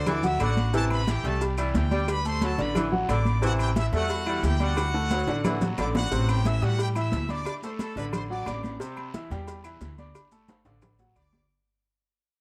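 Driven by a straight 4/4 pulse at 178 BPM, this festive, danceable salsa clip is cut from a longer piece and rides on congas, cowbell and bongos, agogo bells and timbales, claves, guiro and maracas, with high-tuned, damped congas and ringing metal-shell timbales sitting back in the mix, grainy maracas also in the background, and the claves and raspy guiro staying very quiet. Up front, a thumpy, dark upright bass with gut strings plays pizzicato from A1 to A2, while a bright, present, polished concert grand piano with deep bass fills out the accompaniment until 11.4 seconds. A brilliant trumpet section carries the melody with vibrato, reaching up to E6, then drops out at 8.6 seconds before a brief return near the close. Beneath it, a punchy, roomy saxophone section adds a low second line until 6.0 seconds. The harmony moves between D, Am7 and D7, touching D9sus4 before settling back on D, with drum fills marking the ends of both halves, light reverb around the parts, and a fade-out through the second half from 6.1 seconds.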